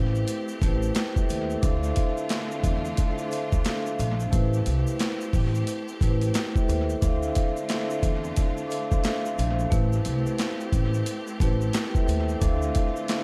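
Boom-bap hip-hop in A minor at 89 BPM, this tough, gritty passage is cut from a longer piece and rides a swung 16th-note feel in 4/4. A compressed, pitched-down sampler-style drum kit sits up front from 0.3 seconds, with a thumpy kick, high-tuned snare, handclaps and hi-hat carrying the grit of a re-recording in a large room. Beneath it, a woody, growly pizzicato upright bass on steel strings holds the low end until 12.7 seconds. A soft-mallet vibraphone, ringing and airy with slow motor vibrato and a dub echo, stays prominent over a lush, intense bowed string section playing sustained chords. A grainy, band-limited tube shaker with its own dub echo enters at 0.2 seconds and stays in the background, while the harmony moves between Am7 and Dm7 in a studio ambience with an echo-heavy mix.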